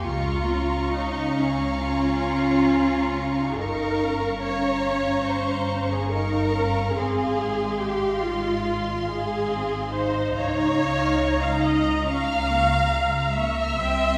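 From the opening moment a string orchestra plays together in this elegiac, melancholic slow romantic movement, cut from a longer piece and shaped with rubato, as a clear, distant violin section carries the melody in the background above a second, expressive violin line, a focused viola section sits up front with the accompaniment, and lush cellos pair with even double basses underneath, every section bowed with vibrato inside a wet recital-hall reverb.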